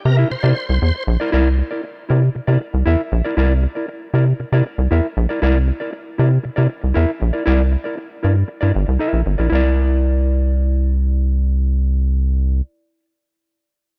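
A rubbery, bouncy square-wave bass sits up front through this playful, energetic funk excerpt at 117 BPM in C mixolydian, its hollow, resonant filter pluck carrying the groove from 0.1 to 12.6 seconds. A bright, shouting tonewheel organ with overdrive, chorus vibrato, fast rotary speaker and tape echo flashes a short melody only until 1.0 seconds, while a mellow, clean, fingered electric guitar accompanies from 0.2 to 13.0 seconds over an opening C9. The dry, rough home-demo mix moves through three sections.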